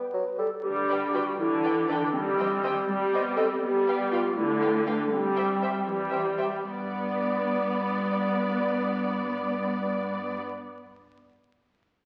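In a straight 6/8, this playful, whimsical film cue opens with a dark, distant clarinet and a brief, present bassoon touch with light vibrato before the lower strings arrive at 0.6 seconds. A warm, up-front viola section and a rich cello section with portamento carry the accompaniment and bass, while a woody, soft-attack violin section sings the melody over a second violin line that sits expressive but in the background, the clarinet weaving its own second line throughout. Mischievous and quirky, this fragment of a longer piece moves from G to a Cm/Eb and a G7, all bathed in scoring-stage reverb and the crackle of a very old 78 rpm record.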